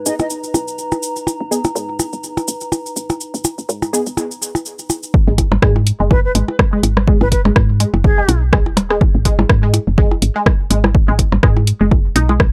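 Cool and clinical, this minimal techno excerpt moves at 124 BPM in 4/4 with a light swing on the sixteenths, set in G# minor over a dry, gritty hardware sound. It opens on a G# minor chord, with a woody, round FM bass pumping under a warbly, lo-fi pad and muted dub chord stabs that carry analog chorus, tape echo and a filter sweep. A grainy, bright cabasa and echoing percussion blips fill the top. A mellow silver concert flute, airy and distant with a crisp chiff, sounds a brief note at the start and returns from 6.1 to 8.4 seconds through tape echo. At 5.1 seconds the drop arrives: the harmony falls away, a punchy electronic kick drives up front, and a tape-warm analog drum machine adds hi-hat and rim click. A juicy, squelchy resonant blip pluck riff then runs through phaser, subtle chorus and tape echo to 12.3 seconds, pumping alongside the bass.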